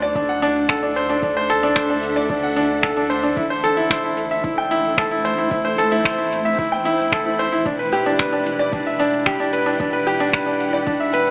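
A bright, woody upright piano riff sits up front with tape echo, over a blurred granular cloud pad with slow attack and sidechain pumping, a dark analog bass in the background, and overdriven electronic shaker and finger snaps. This intimate, melancholic piano-and-strings electronica excerpt moves at 112 BPM in E minor, tuned to A4 = 437 Hz, through D7, Am7 and Em7 chords, with a deep, overdriven electronic kick entering at 0.2 s. A huge ambient reverb and a small-speaker sound shape the whole.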